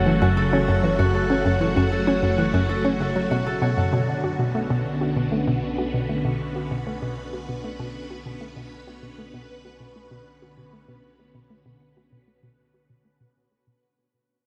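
Cosmic and hypnotic, this excerpt of sequencer-driven ambient space music sets a bouncy, detuned square-wave pluck riff up front against swirling, vintage string-machine chords treated with ensemble chorus and phaser, while a ringing, fingerpicked concert harp plays arpeggios through delay until 5.7 seconds and a deep, round sine sub bass sits low beneath a dreamy mix soaked in huge reverb, the harmony moving from F#m to Bmadd9 at 3.9 seconds as the piece fades out.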